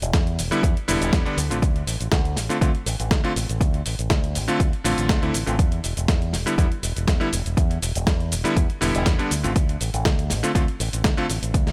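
A dry, up-front mix opens this cosmic, sensual nu-disco excerpt, with an overdriven, punchy electronic kick driving a straight 4/4 groove alongside a gritty, compressed sampler-style kit of hi-hat, snare and cabasa. A fingered electric bass with an envelope filter plays up front, its tone electric and amped, while a bright, cutting vintage electric grand piano with chorused unisons and a clangy low end enters at 0.5 seconds, pumping with sidechain compression as a digital delay trails it. The harmony moves from Em7 to Dm7 and back, settling on D5 near the close.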